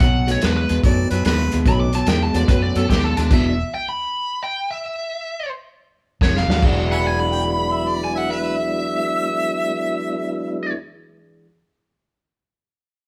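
Recorded live in one room with light reverb, this gritty, rollicking electric blues shuffle in E mixolydian swings at 145 BPM, with a bright, overdriven lead guitar carrying the melody over a slightly broken-up guitar riff, a round, foam-muted bass, a muffled vintage drum kit with dark cymbals, a lightly overdriven tonewheel organ on slow rotary speaker and a clear harmonica adding a second line with tongue slaps and scooped notes, as the rest of the band stops at 3.3 seconds under the lead guitar and returns after a drum fill at 6.2 seconds.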